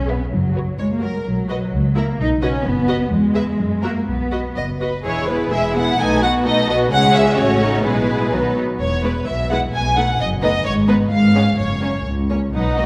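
A quick, cheerful and graceful classical-period movement for string orchestra at 128 BPM in 2/4, moving from B major to E major at 5.0 seconds, with an up-front, focused violin section carrying the melody over a smooth, even second violin line, rich viola accompaniment, expressive soft-attack cellos and a double bass section with touches of portamento, all bowed with vibrato and set in a wet concert hall reverb.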